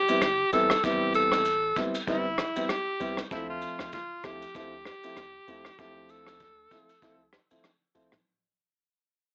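A bright, vibrato-laden alto saxophone with tape echo opens this sultry, hypnotic afrobeats fragment at 97 BPM with a 16th-note swing, carrying the solo melody up front over a mellow, vintage grand piano, a small-room brush kit with punchy kick, rim click, shaker and toms, and a deep sine sub bass sitting in the background, all moving between Am7 and Dm7 through a dry, gritty cassette and AM-radio sound as the whole passage fades out over 8.3 seconds.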